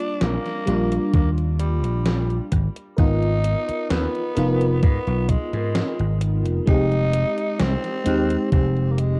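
Nostalgic and dreamy, this short vaporwave fragment, cut from a longer piece, drifts along in a straight 4/4 feel. An FM electric piano layered with a soft pad carries the accompaniment from the first moment, its lush, detuned tone shimmering through analog chorus and cassette grain as it moves through Ebmaj7, Abm6 and Fm7. A raspy tenor saxophone sings the pop-style melody over it, bright and gritty with vibrato and a trail of tape echo. Vintage slap bass arrives at 0.2 seconds, punchy and up front, alongside a gated 80s digital drum machine whose hi-hat and snare ring with gated reverb, sampler-style and re-recorded in a large room. A thumpy electronic kick drum joins at 1.1 seconds and drops out at 8.7 seconds, the loudest part of a rough home demo mix with light reverb and a cassette-tape patina.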